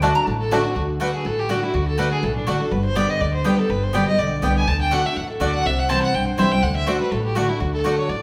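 A rich, nasal fiddle carries this lively bluegrass excerpt, entering at 0.4 seconds and taking a solo from 0.8 seconds onward, its bowed tone smooth and even with a light vibrato and sitting up front. Underneath, a picked steel-string acoustic guitar, also up front, provides warm accompaniment, while a bright, woody mandolin adds double-string stabs. A twangy, percussive banjo played with fingerpicks offers brief arpeggios in the background before dropping out at 0.6 seconds, and a pizzicato upright bass anchors the low end with a woody tone. The driving tune races along at 246 BPM in 4/4 with a slight swing, in D mixolydian, moving through D, G, D, C and back to D. The band plays live in one room, bathed in a wet large-studio reverb.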